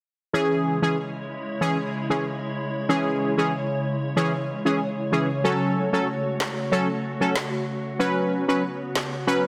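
A bouncy, hypnotic dancehall excerpt where punchy, detuned sawtooth brass stabs with a quick filter pluck ride over a glassy, ethereal FM pad shimmering with ensemble chorus, through a C#m to F#m to Bsus2 progression in a lush hall, with a woody, tape-warm electronic snare and handclaps joining at 6.4 seconds.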